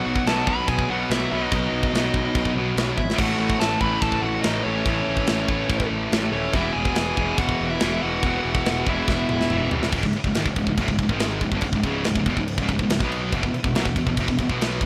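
Heavy metal at 142 BPM in C# minor, aggressive and epic, cut from a longer piece with a rough home-demo sound and little reverb. A dark, smooth overdriven lead guitar carries the melody with digital delay, shadowed lower by a high-gain lead guitar sitting in the background, both dropping out at 9.7 seconds. Underneath, a heavy high-gain guitar up front and a tight distorted guitar further back grind out the low riff, joined by a growly fuzz-picked electric bass. A tight acoustic metal kit with bright china and crash cymbals, a medium-tuned snare and tight kick drives the track, throwing in fills at 3.0 seconds and again just before the shift to power chords at 9.9 seconds. A very quiet chamber organ on flute stops, with chiff and tremulant, holds soft sustained chords behind the riffing and returns briefly at 13.3 seconds.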